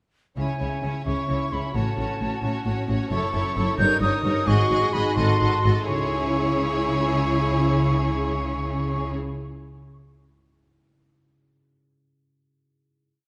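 From 0.4 s this quirky, mischievous, whimsical film cue in 6/8 sets a rich violin section on a smooth, repeated-note melody, with a second violin line beneath it, a pure, bright flute above, expressive viola chords with portamento, a ringing harp spreading broken chords in the background, and close cellos doubled by double basses sustaining the bass, the concert hall reverb carrying the ensemble to a final chord at 5.9 s while the harp rings on until 9.8 s.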